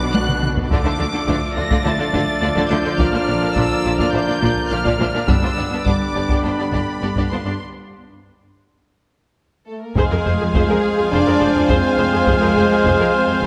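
A close, dry taiko ensemble struck with heavy sticks drives this dark, epic orchestral film-score excerpt at 104 BPM, opening with a fill before a break at 7.6 seconds. Above it, the violins carry a lush, expressive melody with vibrato and a soft attack, while a second violin line, distant violas, cellos with portamento and double basses fill out the background. French horns, trombones and woodwinds hold sustained chords, and a clear, roomy solo trumpet adds stabs from 10.0 seconds over an F minor chord, all inside a reverberant scoring-stage space.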